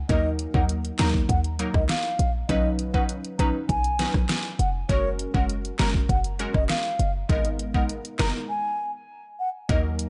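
A straight 4/4 dancehall groove at 100 BPM drives this bouncy, tough snippet in A4 = 441 Hz tuning, where an up-front, overdriven pop drum kit with a knocking kick, deep snare, handclaps, hi-hat and rim click sits over a punchy, tight 808-style sine bass, while a glassy, detuned wavetable pluck with chorus and a filter sweep carries the Ebm, Badd9, Gbadd9 and Abmadd9 chords beneath a mellow, tongued baroque flute melody with vibrato and tape echo, all in a dry, dark-edged mix that pauses for a break at 8.5 seconds.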